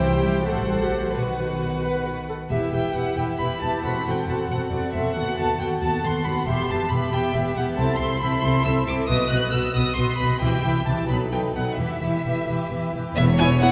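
An up-front violin section carries the melody with vibrato and a soft, sul tasto touch over a smooth-topped second violin line, dark violas, a cello section in the background and a warm double bass section, giving this cheerful, lively classical-period string orchestra excerpt in 6/8 an intimate, close feel inside a concert hall's wet reverb.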